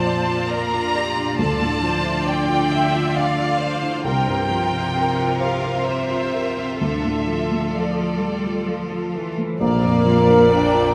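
A felt-muted upright piano sits up front, mellow and intimate with audible action noise, beneath an expressive, lush violin melody in this moving, longing cinematic film-score excerpt in 3/4 with an uneven, rubato pulse. A distant, intense second violin line, a focused viola section, ringing harp arpeggios and a smooth-topped cello bass fill out the texture inside a wet scoring-stage reverb. At 9.6 s a dark French horn section enters with sustained chords, joined by a hollow silver flute, a clarinet, a cor anglais and a double bass section in the background.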